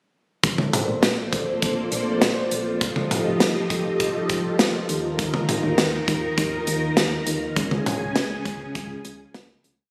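A punchy kick and a medium-tuned snare sit up front in this brief, upbeat synth-pop piece, as a modern studio drum kit plays a drum-machine beat with hi-hat and syncopated toms in a straight 4/4 at 101 BPM. Beneath it, a round, dark FM bass pulses in eighth notes with a fast attack and decaying tone. A vintage string machine voiced as cellos holds full-bodied sawtooth chords with a sub octave, slow attack, long release, a moving notch and ensemble chorus, giving a nostalgic glow. All three parts enter at 0.4 seconds and move through Bbmaj7, F7, Ebsus2 and Db across a single verse. The recording has the character of a phone capturing the room, with compression and a lush 2.6-second hall reverb, and it fades out from 7.6 seconds to its close at 9.9 seconds.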